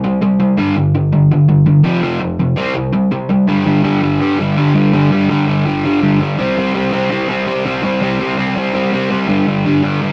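The recording has a rough rehearsal-room sound with tube saturation and a moderate studio reverb that gives the guitar a short tail. This is an energetic, rowdy punk fragment cut from a longer piece, driving at 165 BPM in a straight 4/4 with the tuning set to A4 = 439 Hz. A lone electric guitar carries everything for the full 10.1 seconds, crunchy and overdriven, picked and double-tracked, sitting up front in the mix between F2 and C4. The opening passage moves through C5, G5, F5 and back to C5, and a second passage begins at 3.5 seconds on G5 before returning to C5 and then G5. The thick, doubled grit of that guitar against the raw room gives the clip its scrappy punch.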